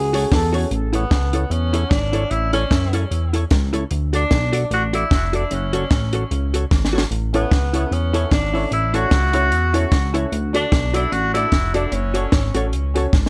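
Light reverb surrounds this bouncy, joyful ska excerpt: a dry cocktail drum kit sits up front with a high-tuned snare and punchy kick over a swung feel, alongside a glossy, retro synth bass with chorus and filter sweeps. A trombone opens with a brief vibrato phrase through tape echo, and from 0.9 seconds a clear, distant tenor saxophone carries the solo melody, also with tape echo, over clean, compressed accompaniment from a dark hollow-body electric guitar. A mellow, woody upright piano adds short stabs in the background, returning at 7.3 seconds just after a drum fill.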